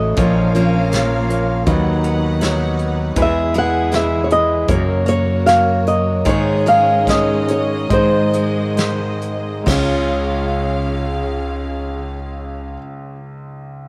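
Opening together, a dark, fingerpicked nylon-string guitar carries the melody over a clear concert grand piano with audible action noise, bright picked steel-string acoustic guitar arpeggios, bowed sul tasto strings holding sustained chords and a round, up-front fretless electric bass, while a soft brush drum kit joins a moment later in this tender, nostalgic acoustic folk-pop ballad in Db major at 66-80 BPM, which slows from 3.2 to 9.7 seconds before the drums drop out at 9.9 seconds, heard through light reverb and small room ambience.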